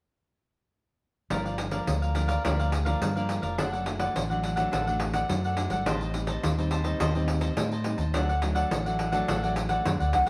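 A straight 4/4 feel at 105 BPM carries this bittersweet, yearning samba and choro passage in G harmonic minor, cut from a longer piece. From 1.3 s a jingly, hard-handed pandeiro and a dark, round fingered electric bass sit up front, while a crisp picked cavaquinho and a classical fingerpicked nylon-string guitar in the background move through Gm7, D/F#, Am7b5 and D. At 10.1 s a breathy, mellow concert flute with vibrato enters on a single F#5 just as the clip ends, all heard as a band playing live in one stone room with moderate reverb.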